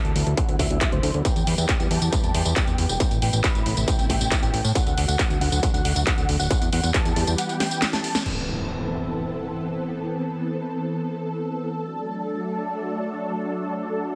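Opening on a huge, detuned supersaw melody with a low-pass filter, over thick, saturated analog bass and a techno kit with cracking snare, handclaps and tambourine, this euphoric, emotional uplifting trance piece at 137 BPM in A dorian adds a silky, chorused string pad and a distorted electronic kick, with the melody, pad and bass pumping to the sidechain, before a drum fill leads into an electronic impact at 8.3 seconds and the pad carries on until 14.2 seconds, all set in light digital ambience with a heavily compressed, radio-like sound.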